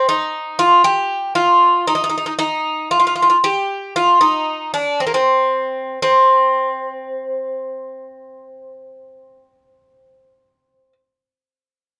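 A lightly reverberant sound places a lone Greek bouzouki up front, its picked double strings ringing with a warm, metallic tone and some octave-doubled strings that thicken the sound. This short excerpt of Turkish music, cut from a longer piece, is soulful and melancholic. It moves in a straight 10/8 at 116 BPM counted in eighths, drawn from makam uşşak on C with the tuning set to A4 = 443 Hz. The bouzouki plays solo from 0.0 to 10.9 seconds, staying within a modest range from Bb3 to G4. Its phrases fall into two sections, the first running to 6.0 seconds and the second carrying on to the close at 11.2 seconds.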